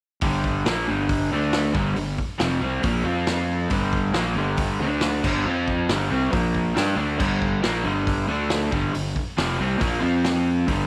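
A small room with light reverb frames this short garage rock cut, giving it a raw, close feel. At 138 BPM in a straight 4/4, a crunchy overdriven guitar sits up front, bright, picked and double-tracked, driving a swaggering riff in G minor from 0.2 to 10.9 seconds. Beneath it, a fingered electric bass growls with dark, round fuzz and overdrive. A vintage acoustic drum kit keeps the pulse with a punchy kick, a medium-tuned snare, hi-hat and crash, its dusky cymbals and rolled-off top keeping the kit mid-forward and close. The riff circles around G minor, moving through D5, F5 and B-flat power chords, a compact single section that feels lifted from a longer song.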